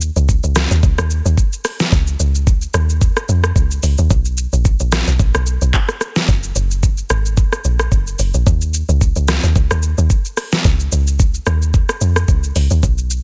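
Swung sixteenths drive this deep, late-night amapiano fragment, where an up-front electronic drum kit of knocking kick, deep snare, metallic hats, rim clicks, handclaps and shaker sits with a woody, punchy log drum bass whose dark, fast-attack FM tone decays over a noisy layer, all kept dry and pressed into a dense, heavily limited modern master.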